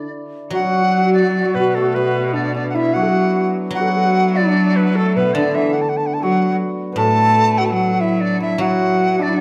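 Set in a wet recital hall, this graceful, festive excerpt of Chinese traditional chamber music moves in a rubato 2/4 at 74 BPM, with a bright, buzzing large dizi carrying the melody over a breathy low xiao, a shimmering hammered dulcimer and a silvery guzheng accompaniment, while a focused, bowed cello joins at 0.5 seconds as a further second line.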